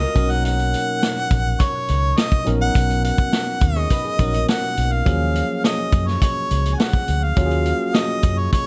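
A straight 4/4 groove from a tight-kicked, rolled-off vintage drum kit and a round, foam-muted fingered bass carries this smooth, bittersweet slice of lush 1970s-style soul, where a clear, up-front harmonica sings the melody with vibrato and scooped notes over a barky, lightly overdriven tine electric piano with subtle chorus, while a slightly broken-up electric guitar riff with spring reverb sits in the background until 5.0 seconds, just as the harmony shifts from Bmaj7 to Ebm11.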